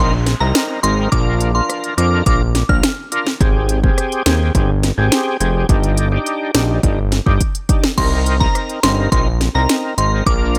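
A glassy FM synth bell, a gritty overdriven tonewheel organ, a fat detuned sawtooth bass and a very quiet electronic downlifter open this sultry, bouncy dancehall excerpt in a straight 4/4. The bell carries the melody high up with a crystalline, warbling tone colored by chorus and tremolo, stopping at 2.8 seconds and returning from 8.0 seconds. Underneath, the organ fills the middle with thick chords, its key click and second-harmonic percussion turning slowly through a rotary speaker with chorus vibrato, while the up-front bass plucks and sustains deep in the low end. An electronic afro-pop drum kit arrives at 0.3 seconds with a deep kick, sharp snare, rim clicks, smooth hats and crash cymbal, and a drum fill leads back to the opening Cm7 chord. The harmony moves from Cm7 through Bb, Abmaj7 and Ebmaj7/G, all set in a digital ambience.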